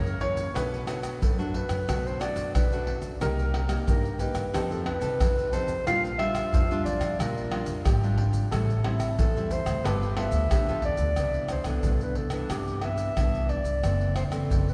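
A mellow, distant clarinet sings the melody in this lively, festive samba-choro passage at 90 BPM, cut from a longer piece. A fingerpicked nylon-string guitar with fresh strings, a woody, growly pizzicato upright bass, and a soft, felt-muted upright piano tucked in the background carry the harmony, with the piano's second line dropping out at 11.1 seconds as the music settles into C major. Up front, tube shaker, pandeiro, tamborim and a deep surdo are played with hard hands, while a long cathedral reverb fills the space like a church or concert hall.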